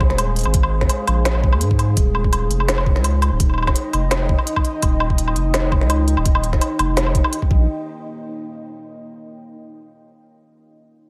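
A spacious, lightly reverberant digital ambience frames this tense, brief cut of half-time drum and bass at 168 BPM in 4/4, with a slight swing on the sixteenths. It opens straight into a drop, where a thick, saturated sine sub bass with a fast attack sits up front beneath a knocking, tape-warm electronic kick. An overdriven electronic kit, re-recorded in a large room and placed up front, adds a woody snare, crisp hi-hats and woodblock. Behind them, a deep, moody pad of detuned unison sawtooths and a sine sub octave holds sustained chords with a slow attack and long release, colored by chorus and built-in reverb and pumping against the sidechain. The harmony moves from Ab to Eb before briefly dropping out, and after the bass stops at 7.7 seconds the dark pad carries on alone into a Bbm chord until 9.1 seconds.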